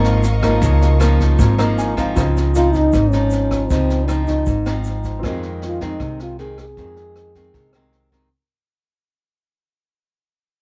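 A breathy, dark trombone carries the melody from 2.6 seconds, up front and intimate, with light vibrato, soft attacks, scooped notes and a whispered jazz delivery that picks up a cassette-tape color. This sunny, sophisticated bossa nova fragment is cut from a longer piece, and a small, fingerpicked nylon-string guitar with fresh strings and a woody upright bass played pizzicato and set up front underpin it. A jazz brush kit sits distant and roomy, with a high-tuned snare, rim clicks and a boomy kick under a rolled-off, tape-tinged top. A grainy tube shaker lingers in the background, and a baby grand piano with audible action noise and short sustain adds background accompaniment and a brief fill at 1.4 seconds. A dark, sul tasto chamber string section holds soft bowed chords at the start before dropping out at 2.1 seconds, and the remainder fades out within a dry, homespun cassette sound.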